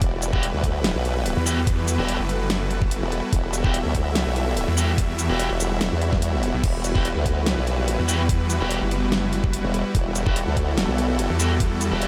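Light reverb and digital ambience frame this chaotic, aggressive fragment of heavy wobble dubstep, which rides a swung half-time groove over a single Emadd9 chord. Two up-front basses dominate: a formant-sweep wobble bass thickened with chorus and overdrive, and a growling, detuned distorted saw bass that enters at 1.4 seconds. Alongside them run a knocking, tape-warm electronic kick and a layered dubstep kit with a huge snare, bright hats, crash and shaker, while a lush supersaw pad and an ethereal, phaser-tinged airy pad in the background both pump with sidechain, and a distorted electric guitar adds picked stabs soaked in dub echo from 0.3 seconds.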